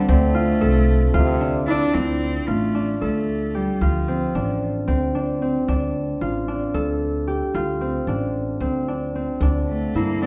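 A straight, evenly pulsing 7/8 meter gives this contemporary chamber piece a hypnotic, pensive sway, cut from a longer work and heard in a recital hall with a wet, lingering reverb. A concert harp plays ringing, thumb-plucked arpeggios up front throughout, while an upright bass supplies a woody pizzicato bass line on steel strings, equally close. A single bowed cello carries the melody with a dark, intimate tone: soft attack, sul tasto, a smooth top and vibrato. A French horn adds a warm, lightly vibrato second line in the background, heard briefly at the opening. The harmony moves from F to Dm7 at 2 seconds, and when the cello falls away at 4.6 seconds, harp and bass carry on over that Dm7. The horn returns at 9.4 seconds over a Csus2/D chord, and the cello rejoins at 9.7 seconds.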